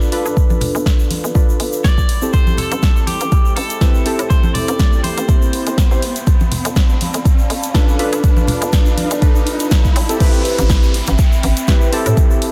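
A warbling, lo-fi pad of detuned chords and warm analog keys with round, mellow stabs open this deep house excerpt together at 0.0 s, both pumping with sidechain and the keys trailing tape echo, over a G9 to Am7 progression in A minor. Within the first half second the punchy analog drum machine, a grainy egg shaker, close and dry congas and a hollow, bouncy FM bass arrive, while an overdriven, layered kick sits up front at a steady 122 BPM with a light swing on the sixteenths. At 1.8 s a twangy electric guitar at the edge of break-up picks out a short melody through a low-pass filter and digital delay, dropping out at 6.0 s. Through the build-up, filter sweeps move across the nostalgic pad and the guitar while a background riser climbs until the drop lands at 10.2 s on Am7. The mood is warm and late-night, set in light digital ambience with a dense, heavily limited modern master.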